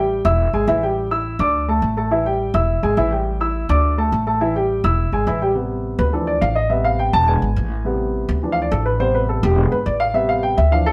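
Passionate and driving, this salsa passage pairs a dark, mellow grand piano with a woody, thumpy pizzicato upright bass on gut strings, both sitting up front in a moderate studio reverb. The opening bars circle through E, A5 and D5 figures. At 5.6 seconds the piano takes a solo over a richer progression of Am7, Dmadd9 and E7 until the cut at 10.9 seconds.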